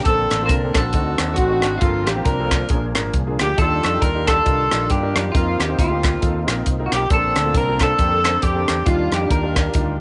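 Soulful and reverent, this swung uptempo gospel fragment places a warm saxophone section with slapback echo up front on the melody beside a clean, picked electric guitar bathed in lush chorus, while a crisp fusion drum kit with punchy kick, a dark, round fingered electric bass, a clear grand piano with audible action noise in the background, a very quiet tonewheel organ holding sustained chords through a fast rotary speaker with key click, and compressed, saturated group handclaps fill out a studio-reverb sound moving from Bbmaj9 through D7b9, Gm11 and Ebmaj9.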